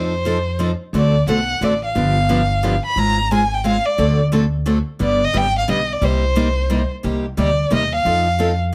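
A fiery, virtuosic jazz manouche waltz in C minor opens at once at a brisk 177 BPM, with a bowed violin singing the melody up front, its warm, smooth top colored by vibrato and expressive portamento. Beside it, a bright picked steel-string acoustic guitar with fresh strings and audible finger squeak supplies the accompaniment, while a woody, thumpy pizzicato upright bass on gut strings anchors the low end. A moderate club reverb frames this short swinging passage, which is cut from a longer piece and moves through a chain of chords, reaching Cm7 at 6.0 seconds before turning to F7.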